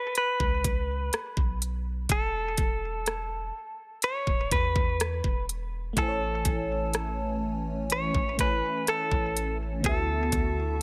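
A bright, twangy clean electric guitar carries the melody up front from the very start, its picked, compressed tone recorded direct and coloured by vibrato and delay. This short excerpt of contemporary R&B moves at a slow 62 BPM in a straight 4/4, with a longing, late-night mood and tuning set to A4 = 439 Hz. A trap drum kit enters almost at once with a knocking kick, crisp hi-hats and rim clicks sitting forward in the mix, while a deep, round 808-style bass with a dark, decaying sine tone joins at 0.4 seconds. At 5.9 seconds a lush, dreamy FM electric piano layered with a soft pad arrives, treated with chorus and phaser, and a hollow, flute-like pad follows at 6.0 seconds, warbling and vintage in character with slow-fading sustained chords under an ensemble chorus. The harmony drifts from Bsus2 and Esus4 to Amaj7 and D69, all wrapped in a digital ambience.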